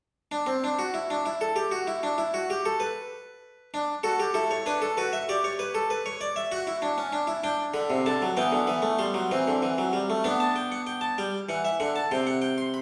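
Lively and elegant, this baroque-style three-part fugue in a straight 6/8 is played on a solo harpsichord of bright, plucked Flemish character with a single set of strings, set up front in a reverberant stone room, entering at 0.3 s and running until 12.8 s as a fragment cut from a longer piece.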